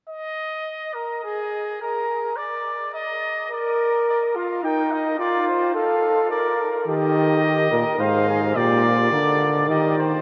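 A classical imitative canzona for brass ensemble in Eb major, lively yet stately, moving at 106 BPM in 3/4 in this brief cut from a longer piece. A warm trumpet opens alone with the melody, a mellow flugelhorn joins at 3.5 seconds with a second line, and a trombone enters at 6.9 seconds with a low accompaniment, each voice carrying light vibrato in a classical style. The trumpet and flugelhorn sound distant and roomy, and the whole ensemble rings inside a vast, echoing space with a huge, drenched reverb that lingers long after each phrase.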